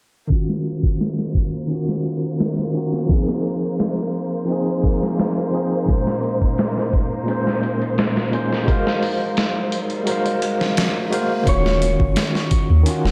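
A straight boom bap sampler-style drum kit, compressed and gritty with a thumpy kick and high-tuned snare re-recorded in a large room, drives this brooding, dark trip hop cut from a longer piece, while an up-front overdriven tine electric piano with tremolo, 12-bit sampler grit, tape echo and a filter sweep carries the accompaniment over lush, vibrato-laden violin chords held in the background. A very quiet string-like sawtooth drone creeps in at 4.1 seconds, a faint electronic riser builds from 8.9 seconds, and the kick drops out at 10.1 seconds. At 11.5 seconds the strings stop and the music shifts as a shimmering, hammered santur melody with tape echo rings over a deep, round 808-style bass, all soaked in dreamy plate reverb.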